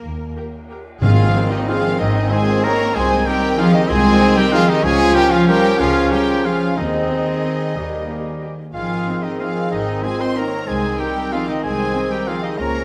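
A lush, vibrato-rich violin section carries the melody of this elegant, sweeping orchestral ballroom waltz in Ab major, moving at 186 BPM in 3/4 with uneven, rubato beats, over a smooth cello section and an expressive double bass section, while a second violin section lies in the background and a very quiet viola section adds accompaniment. At 1.0 seconds a band accent brings in the full wind and brass: a vintage-toned clarinet, a clear oboe, a pure flute ensemble, a soft-attacked bassoon, a tight trombone section holding chords, trumpet stabs with light vibrato, and, from 1.4 seconds, a distant, dark French horn section. A brief, faint tam-tam sounds alongside hard-mallet calf-head timpani, and the timpani return at 6.8 seconds. The whole orchestra sits in a wet recital-hall reverb as the chords move from Eb through Ab and Db in this excerpt cut from a longer piece.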